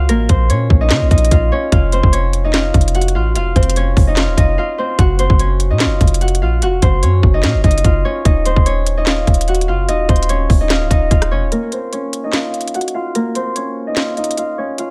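A half-time trap groove in 4/4 drives this menacing, hard-hitting hip hop excerpt, with an electronic kit of hard-clipped kick, sharp snare, crisp hi-hats, rim clicks and handclaps sitting up front. Beneath it, a deep, boomy 808-style bass with a sine core, a noise layer and a fast, decaying attack supplies a mellow low end until it stops at 11.5 seconds. Carrying the melody from the start is a fingerpicked Celtic harp, acoustic and ringing, softened by a low-pass filter. The harmony moves from Bbm through F5, Gb6 and Eb7(no3) before returning to Bbm, with a brief break at 4.6 seconds and a longer break from 11.5 seconds, where the harp and drums carry on alone. The mix is dry, with little reverb, and each part sits upfront.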